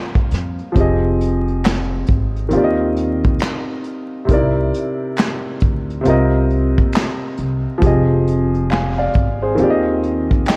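An intimate upright piano accompanies this hazy, melancholic lo-fi hip hop fragment, its woody, smooth tone carrying audible action noise and a cassette-tape coloring as it moves through jazzy seventh and sixth chords, opening on a rootless Ebmaj9. A vintage brush kit sits up front beside it from 0.2 seconds, pairing a punchy kick and a medium-tuned snare with hi-hat and handclaps in a small-room sound. A pizzicato upright bass on steel strings joins at 0.3 seconds, thumpy and saturated with tube grit. Very quiet finger snaps arrive at 1.6 seconds, sounding distant in a large room. The whole mix rests in light reverb under worn, warbling tape with vinyl crackle and drifting pitch, and the groove swings its sixteenths in 4/4.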